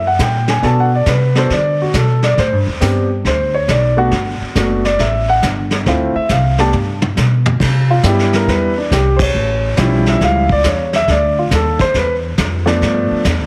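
A relaxed swung 4/4 groove carries this sophisticated jazz piano trio excerpt, cut from a longer piece. It pairs an up-front concert grand piano with deep, natural lows carrying the melody, a woody, growly pizzicato upright bass, and a vintage kit played with brushes, with its dark cymbals and punchy kick sitting behind a rolled-off top. A drum fill at 6.7 seconds leads into a new section, the band hits an accent at 9.1 seconds, and the whole trio sits in a large studio reverb with a heavily compressed radio sound.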